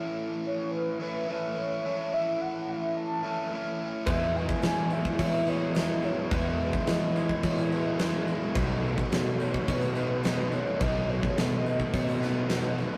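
Shoegaze-tinged dream-pop rock at 107 BPM in E major, hazy and blissful, opens with a biting overdriven guitar riff and a round, warbling horn-like synth lead colored by chorus and analog delay, then at 4.1 s a huge arena drum kit with a fat snare and bright cymbals, a growling overdriven bass, a dark lo-fi garage guitar riff, faint clean picked arpeggios and a very quiet jingly tambourine join in, moving from A through Emaj7 to B7 in a rough, tube-saturated rehearsal-room sound with stone reverb.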